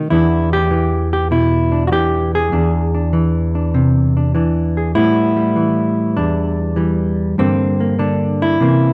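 Moody and smoky, this short solo jazz passage, cut from a longer piece, features a clean, fingered hollow-body electric guitar sitting up front with a dark tone, swinging in 4/4 through Em7, Eaug7, A9sus4 and Gmadd11 chords, bathed in the generous reverb of a large studio that gives the production a warm, shadowy depth.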